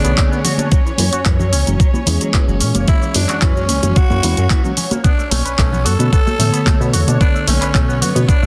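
A growling tenor saxophone carries the melody in this short nu-disco clip, its raspy, close-miked tone laced with vibrato and trailed by a delay. Beneath it, a mellow tine electric piano comps through tape echo, while a twangy, clean guitar riff runs through an envelope filter, with subtle chorus and a touch of 12-bit sampler grit, in the background. Dark, woody strings hold lush sustained chords behind the band, pumping against the beat, as the harmony moves from Bm9 to F#9 and back to Bm9 at 5.0 seconds. The low end is driven by a glossy, nasal synth bass with a plucky attack, entering at 0.1 seconds, and an overdriven, knocking electronic kick up front from 0.2 seconds, alongside a gritty pop kit of cabasa, handclaps and hi-hat, playing from the start, and soft-handed congas and bongos further back. The mood is sleek and sensual, with a straight 4/4 feel, light reverb and a dense, heavily limited modern master.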